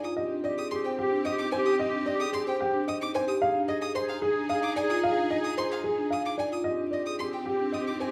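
A dark baby grand piano opens this short cut from a longer piece, carrying the melody between G4 and F5 with a mellow, intimate tone, short sustain and audible action noise, placed up front, while a single bowed violin and a marimba played with soft mallets enter together with it. This is hypnotic, meditative minimalist pattern music in 3/4 at 111 BPM with a straight feel, tuned to A4 = 441 Hz. The violin spins intense, vibrato-laden arpeggios high above, from Eb5 to Eb6, while the marimba's round, warm arpeggios sit lower, between D4 and C5. Just after the start, at 0.2 seconds, a clear, present clarinet adds a classical-style second line confined to G4 and Ab4, and a lush, focused studio string section holds smooth sustained chords. The harmony moves from Abmaj7 to Fm7 and back to Abmaj7, all set in a moderate recital hall reverb that lends the ensemble a sense of space.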